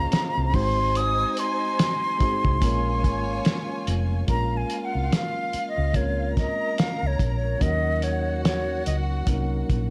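Over a gently swung sixteenth-note groove from a muffled, cloth-damped drum kit with a fat snare and a tight kick, this cinematic, silky 1970s-style soul excerpt sets a round, hollow-body fingered electric bass beneath a mellow tine electric piano and a dark, lush bowed violin section, while an airy silver concert flute with soft-attack vibrato carries the melody up front and stretches into an expressive solo from 4.3 s, all within a small room.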